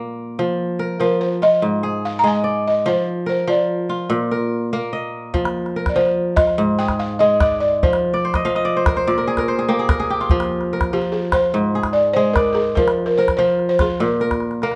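The recording has the feel of a band playing live together in a large studio, with a moderate reverb and a soft, rounded top end. This is traditional West African string and xylophone music in F dorian, tuned slightly high at A4 = 444 Hz. It moves at 97 BPM in a straight 12/8, with a reflective, hypnotic mood, and is cut from a longer piece. The balafon carries the melody throughout, with a woody, buzzing tone from soft rubber mallets and a dry, boxy character. Beneath it, the fingerpicked kora spins ringing, crisp arpeggios across a range from Ab2 up to F5, sitting up front in the mix, and it breaks into a short fill at 8.1 seconds. A deep, close calabash joins at 5.3 seconds, adding percussion under harmony that circles around F with suspended and minor colours and passing Bb and Ab chords.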